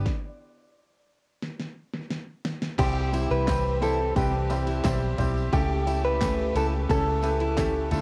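This short piece has the light reverb and soft haze of a home recording on cassette tape, with the piano, drums and guitars all carrying that tape colour. It is an anthemic, warm piano-driven pop piece in C major at 88 BPM in a straight 4/4. A clear, woody upright piano with audible action noise leads the accompaniment from the start, over a round, foam-muted vintage electric bass that sits up front and a very quiet, lush studio string section holding bowed chords with vibrato. The band stops briefly after the opening beat, and a punchy, layered pop drum kit with a fat snare plays a fill from 1.4 seconds. At 2.8 seconds the full groove arrives on a C chord: a bright, compressed clean electric guitar picks the melody through spring reverb, a full-bodied fingerpicked jumbo acoustic guitar plays a riff in the background, and a jingly tambourine sits close and dry behind them. The harmony then moves to A7/C# at 5.5 seconds.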